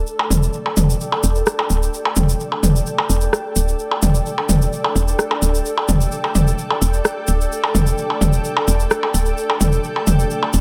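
Set to a straight 4/4 pulse at 129 BPM, this short minimal techno cut from a longer piece sits on a single Em7 chord in E minor, tuned to A4 = 439 Hz, with a sparse, clinical mood. A punchy analog drum machine with a tape-warm edge supplies hi-hat and rim click, both hats and snare run through a low-pass filter, while a barely audible soft brush drum kit with a medium-tuned snare sits far beneath it. Electronic percussion blips and toms, up front and re-recorded in a large room, carry a delay, and a close, dry tube shaker adds a grainy, bright shimmer. Underneath, a woody FM bass, round and dark with a fast attack that decays, holds the low end between D1 and E1 and sits near the front. A granular cloud pad of detuned unison sines drifts between A4 and G5 with a slow attack and long release, its blurred, evolving haze soaked in built-in reverb, and the whole mix rests in light digital ambience.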